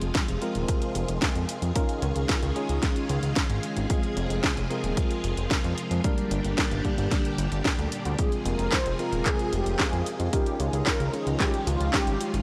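The recording is dry and gritty, with transformer saturation, light reverb and a digital ambience framing this melodramatic, bittersweet slice of italo disco taken from a longer piece. A swirling, vintage string machine holds bright, slow-blooming chords through chorus, phaser and shimmer reverb, while a clean tine electric piano adds stabs heard as if through its built-in speakers, also bathed in shimmer. Underneath, a fat, nasal analog bass with a detuned, saturated plucky edge sits up front beside a house kit of cracking snare, bright hats and handclaps, the kit pushed into overdrive. A punchy, overdriven electronic kick drives the straight feel, and the chords move through Fm, Dbadd9 and Gm. At 8.2 seconds a mellow, round synth brass enters with the melody, its brassy sub-octave tone carried by vibrato, a filter sweep, chorus, analog delay and shimmer reverb.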